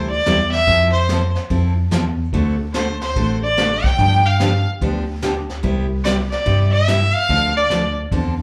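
Cheerful and swinging, this short western swing cut in C major moves at 145 BPM with a lilting swing feel, as a clear, focused fiddle carries the melody with light vibrato, set back yet up front and touched by plate reverb and slapback echo. A bright, full-bodied picked steel-string acoustic guitar, finger squeaks audible, picks through chords such as Fmaj7, D7, G7 and Cmaj9 under the same reverb and echo, while a clean tine electric piano handles the bass line through its built-in speakers. A jazz brush kit with a boomy kick and a medium-tuned snare enters at 0.3 seconds, and the whole performance comes across as a live gig heard through a club's PA with a moderate room sound.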